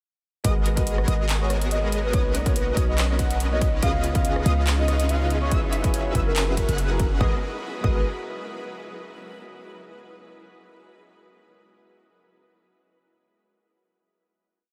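A lush, dreamy future bass piece opens straight into its drop at 0.4 s, where a punchy, overdriven kick and a trap kit of metallic hi-hats, handclaps and rim clicks set a half-time, lightly swung beat under a deep, boomy 808-style bass, while a velvety synth lead with vibrato and chorus sings a repeating riff melody over a smooth, detuned supersaw riff with ensemble chorus, a vintage-toned piano plays dotted-rhythm chords in the background and a faint unison pluck with a cassette-tape colour doubles the chords an octave higher; a shimmering, ethereal pad enters at 1.6 s, the lead, piano, supersaw, pluck and bass all pulse with sidechain pumping, and the reverb-soaked mix settles on a final chord at 7.2 s.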